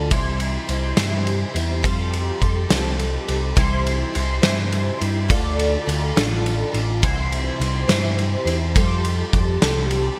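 A picked twelve-string acoustic guitar and a picked electric bass open this short indie folk passage, cut from a longer piece, with a loose indie drum kit joining at 0.1 seconds. The mood is nostalgic and unhurried in 6/8, and the arrangement is built to grow, moving through C, Fadd9 and Dm before returning to C and Fadd9. The twelve-string guitar, up front, carries the accompaniment with a shimmering, octave-doubled sound, an ensemble chorus effect and audible finger squeak, set in an auditorium-like space. Beneath it, the amped electric bass is round and present, while the kick is punchy, the snare medium-tuned and the ride cymbal dark, with a pumping room quality, a rolled-off top and gated reverb on the drums. The overall production is bright and 1980s-flavoured, with light reverb and a small-room ambience, and the passage ends at 10.2 seconds.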